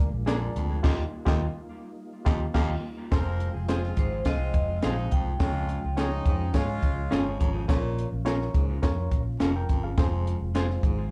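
A barky, lightly overdriven reed electric piano with fast tremolo and slapback echo accompanies this passionate, driving uptempo 1960s-style soul excerpt in F minor at 105 BPM, over a punchy cocktail drum kit with a high-tuned snare and a round, foam-muted fingered bass sitting up front. A warm baritone saxophone plays a low riff, a clean guitar adds stabs, and a mellow, flute-like tonewheel organ holds soft sustained chords in the background, with a band accent from 0.8 s. At 3.1 s a clear jazz-style horn section enters with a second line, a metallic, ringing vibraphone carries a brief melody from 4.0 s, and a twangy, slightly broken-up guitar riff flickers in at 7.1 s, the live gig heard through the venue's PA with club ambience.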